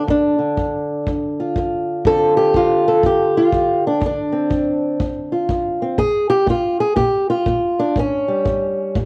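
A loping 4/4 at 122 BPM with a light swing on the eighth notes opens this short cut from a longer piece of acoustic country blues in D minor, soulful and smoky in mood. A fingerpicked old ladder-braced acoustic guitar carries the melody from the first moment, sitting up front with a dark, woody, boxy tone and the dull bite of old strings, ranging from D2 up to A4. A kick drum played with brushes joins at 0.1 seconds, tight but distant and roomy, set well beneath the guitar. The harmony moves from a G5 to Dm7 at 2.0 seconds, drops away to a chordless stretch at 6.0 seconds, then lands on A7 near the close. Moderate spring reverb and a small room ambience frame the pair, and the cassette tape gives this home recording a worn, intimate character.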